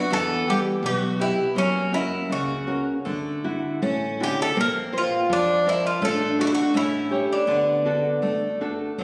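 Rubato and uneven, the pulse hovers around 81 BPM in a loose 2/4, giving this fado-style ballad in D major a passionate, longing sway. An Irish bouzouki carries the melody up front, its picked double strings ringing bright and metallic until it drops out at 8.6 seconds. Beneath it, a picked twelve-string acoustic guitar adds a shimmering, octave-doubled second line with fresh strings and audible finger squeak. A classical nylon-string guitar, fingerpicked and placed up front, supplies the accompaniment across a broad span, while a woody, thumpy pizzicato upright bass on gut strings sits dark in the background from 0.1 seconds. The chords move from Emadd9 through F#, Dadd9 and Bbsus2 before settling via D/A and A7 onto D, all bathed in a wet recital-hall reverb with a compressed, phone-in-the-room character, cut from a longer piece.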